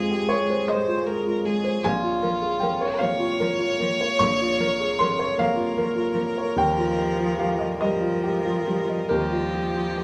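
Neoclassical piano and strings in 6/8, moving at a rubato 45-52 BPM counted in dotted quarters, with an intimate, hopeful mood across this short cut from a longer piece. A dark, mellow upright piano with a woody, natural tone and short sustain sits up front as the accompaniment, ranging from Bb1 to Db6. A single bowed violin carries the melody between F4 and Db5, smooth and even with light vibrato, heard up front yet with a distant quality. Beneath it, a lone cello adds a second line from F3 to Ab3, its dark, expressive voice shaped by vibrato and portamento and placed close. In the background, a bright, airy sawtooth pad with a noise layer holds swirling, evolving chords through phaser and chorus, its slow attack feeding the sustain. The players share one room with a wet ambience and a 0.5 s decay, as the harmony moves from Fm to Bbm at 1.8 s and settles on Ebadd9 at 6.6 s.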